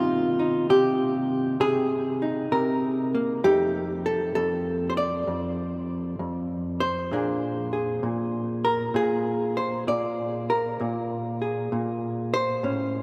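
A lone hollow-body jazz guitar carries the excerpt: clean, dark and fingered, with a compressed, up-front tone that ranges from F2 to D5. The solo jazz passage moves at an unhurried 65 BPM in 4/4 with a swung eighth-note feel, moving through Cm7, F7 and Bb7 in a sophisticated mood. A long cathedral reverb of 5.9 seconds surrounds the guitar, and a faint mains hum sits beneath this 13-second fragment of a longer piece.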